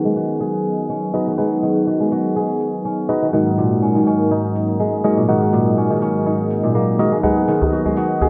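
A lightly swung groove carries this earthy, hypnotic afro house excerpt, with a very quiet, overdriven electronic hi-hat ticking metallically from 0.2 seconds. A fingerpicked kora sits up front, spinning crisp, ringing arpeggios through a low-pass filter sweep and delay. Beside it, a bell-like tine electric piano plays clean, direct stabs, also filtered with a sweep and trailed by delay. Underneath, a smooth, detuned sawtooth pad holds sustained chords with a soft attack, long release and chorus, shifting harmony at 3.3 seconds. At 7.2 seconds a tight, cracking djembe joins up front with hard hands, adding acoustic snap within a moderate digital room reverb and a gently rolled-off top end.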